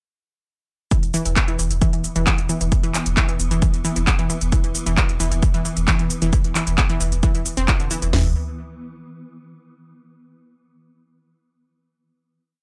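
A dark, relentless peak-time techno piece at 133 BPM bursts in at 0.9 s with an overdriven, up-front drum kit pounding a heavy four-on-the-floor kick under a cracking snare, floor tom and open hats, layered with a programmed clap backbeat, shaker and smooth hats, while a punchy, detuned sawtooth pluck repeats a 3-step loop that drifts against the bar through tape echo and sidechain pumping. A thick, saturated sub bass rumbles on E1 between the kicks, and soon a swarming, granular drone hangs tense in the background, bathed in its own built-in reverb. The dry, gritty mix drives on an E5 chord until the drop ends at 8.1 s, giving way to a final note that rings to 9.9 s.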